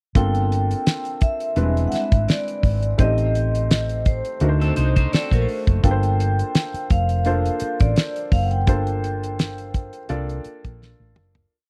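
A lush, silky 1970s-style soul piece in G minor at 84 BPM opens with a dry, close studio sound as a fat-snared, tight-kicked drum kit, a dark, round hollow-body bass with ghost notes and slides, and an intimate grand piano playing rootless half-note chords with grace notes set up a smooth, cinematic groove under a ringing vibraphone motif, while a twangy, slightly broken-up guitar adds a short fill in sixths at 4.6 seconds before the music fades from 8.7 seconds and a drum fill closes it at 10.8 seconds.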